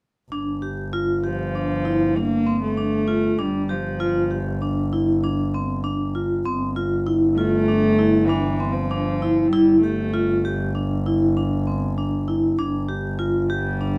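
A metallic, ringing vibraphone with medium hard mallets and a fast motor vibrato opens at 0.3 s with arpeggios in a boxy small room, while a rich bowed double bass holds a low G with light vibrato and an airy, reedy bow. At 1.2 s a dark cello with a smooth top takes up the melody; both strings are played up front by single players, with a period-style gut-string tone. This restless, urgent contemporary chamber excerpt moves at 98 BPM in an uneven 5/4 over a G7 chord, tuned to A4 = 436 Hz and set in light reverb.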